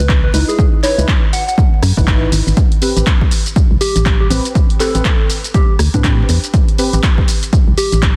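A swung 121 BPM deep house groove in 4/4 drives this hypnotic, moody excerpt, where an overdriven electronic kick sits up front beside a dry analog drum machine of handclaps, hi-hat, rim click and shaker, a hollow organ-like FM bass pumps beneath, detuned mellow chord stabs with chorus and dub echo move from C#m9 to Am9, and a round, keys-like synth lead with a bright sheen carries the melody over a dense, limited master dusted with vinyl crackle.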